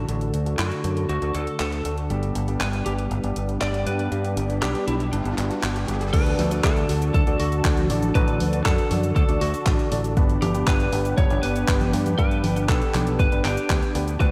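A detuned, warbling analog pad with chorus and a dark, worn grand piano playing delayed stabs open this sunny, danceable italo disco excerpt under filter sweeps, over a growly, up-front fingered electric bass and a tape-warm house kit of cabasa, congas, handclaps, hi-hat and crash, while a slightly broken-up lead guitar with delay carries the melody, and a very quiet riser from 4.1 s leads into a punchy, overdriven electronic kick at 6.1 s, all in a dreamy, reverb-soaked hall.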